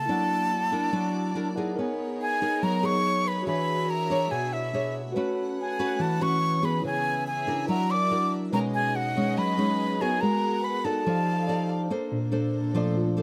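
An airy, vibrato-laden silver flute carries the melody up front in this sunny, sophisticated bossa nova cut from a longer piece, over full-bodied fingerpicked nylon-string guitar, clean tine electric piano heard through its built-in speakers, dark sul tasto studio strings holding sustained, softly attacked chords and a floating chamber violin section tracing a second line in the background, all captured closely and dry, until the flute and violins drop out and the electric piano takes a short solo from 11.9 seconds.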